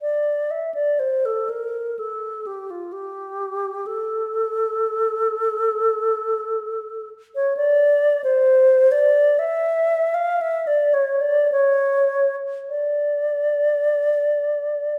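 Classical, a free and expressive fragment cut from a longer piece for unaccompanied alto flute, unfolding in a meditative, mournful rubato. The alto flute sits up front with a pure, warm tone, its tongued notes carrying vibrato and its highs lifted as it plays alone through the full 15.0 seconds. A wet recital hall reverb surrounds the instrument, lending the sense of a church or concert hall.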